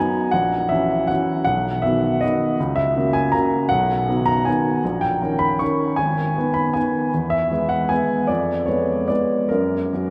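A lilting waltz in three, played with a supple rubato that lets the pulse stretch and give, drives this playful, sparkling classical piece. A solo upright piano carries everything from 0.0 to 10.1 seconds, ranging from a deep G#1 up to a bright C#6. Its tone is woody and intimate, placed up front and present, with audible action noise adding a close, tactile quality and a long, polished sustain. The harmony moves through F#7/A#, B and F#7/C#, then turns toward G#m and E before a Fdim7 at 8.3 seconds leads to a closing F#. The piano sits in a vast, echoing cathedral space, its wet reverb trailing each phrase into a lingering haze. This brief excerpt is cut from a longer piece.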